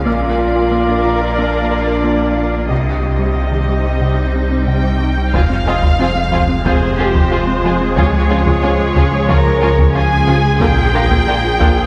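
Brooding and vast, this cinematic film-score passage blends orchestra and electronics at 91 BPM in F minor, moving through Bb, Cm, Fm, Db and Bb. From the outset, lush, close violas and smooth cellos carry the harmony over a deep, saturated sub bass, while a swarming, detuned drone with its own reverb evolves tensely in the background. A round, tine-like synth pluck treated with chorus and delay spins mellow arpeggios, a felt-muted upright piano adds a very quiet, intimate texture with audible action noise, and distant French horns hold soft chords. At 4.7 seconds a focused studio violin section takes the melody with vibrato, and from 5.3 seconds a background violin line, dark trombones, a faint double bass section and a hard-stick taiko ensemble join in. The whole sits in a wet concert hall heard from further back, giving the cut a spacious, looming sound.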